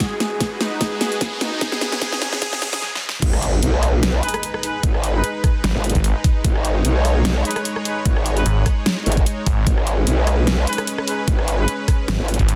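Heavy wobble dubstep in G# minor at 149 BPM, felt in half-time with a light swing, this chaotic excerpt opens on a build-up. A smooth, detuned supersaw lead with cassette-tape character and digital delay carries the melody over a lush, sidechain-pumped pad roughened by 12-bit sampler grit, moving from G#m7 to Badd9 as a riser sits in the background, a drum fill plays and a filter sweep runs through. The lead drops out at 2.8 s for a short stop. The drop lands at 3.2 s on G#m with an impact and a growling, wobbling bass that is formant-filtered, chorused and overdriven, and from 4.2 s a warm brass ensemble with light vibrato adds stabs through digital delay. From 5.6 s a snarling, detuned saw bass with a moving notch joins the low end, and up front a knocking kick and a kit of huge snare, bright hats, rim clicks and crashes drive a dense, heavily limited mix with light digital ambience.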